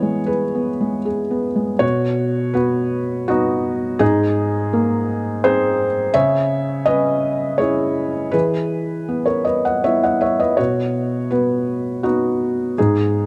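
A dark production with light reverb frames this short excerpt of neoclassical minimalist piano, peaceful and tender in B major at 82 BPM in a rubato 3/4, tuned to A4 = 439 Hz. A felt-muted upright piano plays solo throughout, its mellow, intimate tone sitting up front as it spans G#2 to F#5. The harmony moves from E to B at 1.8 s, then through G#add9, C#m and E before returning to B at 10.6 s.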